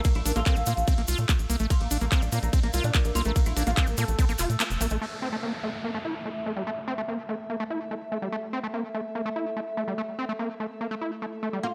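A squelchy, distorted acid bass riff drives this alien, psychedelic trance excerpt at 145 BPM in A phrygian, pumping against a tight, up-front electronic kick, a punchy sawtooth sequencer bass, a techno kit of handclaps, filtered hi-hat and ride, grainy cabasa, and a mellow, woody oud melody with phaser and delay. A ring-modulated drone with moving overtones holds sustained chords throughout, and a very quiet formant-filtered wobble bass flickers in at 0.4 seconds. By 5.0 seconds the kick, kit, cabasa, sequencer bass and oud have fallen away, leaving the drone and acid bass under a downlifter before the oud briefly returns at 11.6 seconds.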